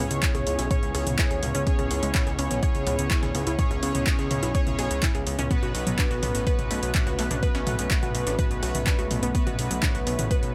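Dramatic and melancholic, this melodic techno excerpt moves at 125 BPM in a straight 4/4, set in C# minor with a tuning slightly below standard, and is cut from a longer piece. A deep, tape-warm electronic kick sits up front alongside a fat, thick sawtooth bass with a filter sweep, both breathing with sidechain pumping, while an overdriven analog drum machine adds handclaps, hi-hat and toms, and a very quiet, gritty sampler-style kit contributes hi-hat and a fat snare. Bold, brassy analog synth stabs ring out with vibrato, chorus and delay, and a warbling, lo-fi pluck plays arpeggios in the background through chorus, 12-bit sampler grit and delay. Underneath, a dark, moody pad holds sustained chords with chorus and a phaser, and a tense, string-like bowed drone enters at 0.2 seconds, nearly hidden. The harmony shifts from C#m7 to B7(no3) at 5.5 seconds, and the mix stays dry with little reverb.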